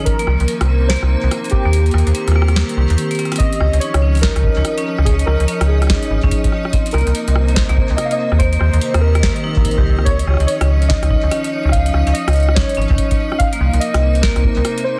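Playful and wistful, this swung IDM excerpt sets a warbly lo-fi synth-keys melody over an icy glass pad and ringing hard-mallet vibraphone arpeggios, with an up-front metallic FM bass, a deep electronic kick that drops out from 1.7 to 3.4 seconds, a booming analog drum machine with crisp snare and a fill at 3.2 seconds, and a faint flickering grainy texture entering at 4.7 seconds, all in a dense, heavily limited master.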